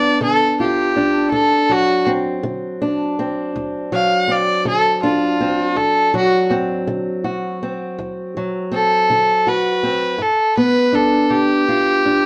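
Acoustic country blues in a straight-feel 12/8 with a rollicking, swaggering mood, this short cut from a longer piece pairs a rich, nasal fiddle carrying the melody with a fingerpicked old ladder-braced acoustic guitar giving boxy, dark accompaniment, both up front and playing throughout the 12.3 seconds. The fiddle's airy bow and reedy gut-string tone sit in a plate reverb, while the harmony moves from G7 to D7 at 1.3 seconds and back to G7 at 10.2 seconds. The production is dark and warm, in a moderate studio room.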